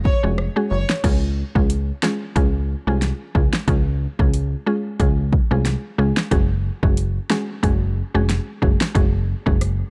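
A swung 91 BPM dancehall groove in 4/4 rolls along on a punchy, layered deep house kit of kick, fat snare, rim click, metallic hi-hats and crash, with a funky, plucky analog bass sitting up front beneath it in Db major for a sunny, summery feel. A woody, round mallet-like synth pluck carries the accompaniment throughout, detuned and chorused with a pumping sidechain. Within the first second, a smooth bowed violin section sounds a vibrato Db5 and a mellow, barely audible pad breathes underneath before the harmony shifts from Gbsus2 to Db at 1.0 seconds, all in a dark, dry production cut from a longer piece.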